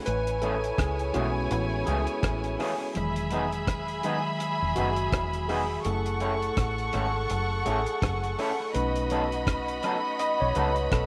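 Sweet and romantic, this lovers rock reggae excerpt sways at 83 BPM in E major with a swung sixteenth feel, as a mellow, clean tine electric piano solos across a progression moving from Amaj7 through Emaj7 and F#m7 to B7. A lush, vibrato-rich studio violin section carries the second line up front, over a round, foam-muted fingered bass and a dark, dry drum kit of tight kick, hi-hat and rim click touched with tape echo. A bright, twangy, slightly broken-up electric guitar with harmonic tremolo adds picked stabs from 0.4 to 10.7 seconds, all set in a moderate echo-chamber reverb.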